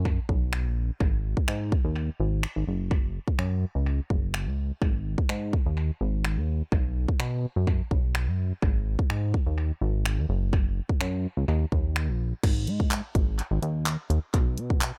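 A dry, echo-heavy mix opens this driving, energetic dance-pop excerpt, where a glossy, retro synth bass built from pulse and sawtooth waves, with ring modulation and a plucky filter, pumps beneath a layered electronic drum kit of punchy kick, hi-hat, handclaps, finger snaps and crash cymbal, its delay-washed hits sitting up front alongside the bass until a new section arrives at 12.4 seconds.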